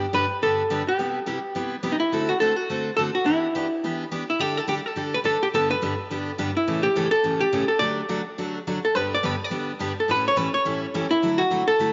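A down-home, cheerful country piece, cut from a longer performance, moves at a brisk clip with a swung eighth-note feel. A miked and amplified archtop guitar carries the melody up front, its clean, hollow-body electric tone picked out over the full 11.9 seconds. Beneath it, a picked steel-string dreadnought acoustic guitar supplies the accompaniment, bright with fresh strings and full-bodied, reaching down to low G2. The harmony travels from G through Cmaj7, D7 and Em7, then passes through an A major chord before closing on Dadd9. A wet plate reverb with a long tail surrounds both guitars, and the top end is cut off above 7.5 kHz.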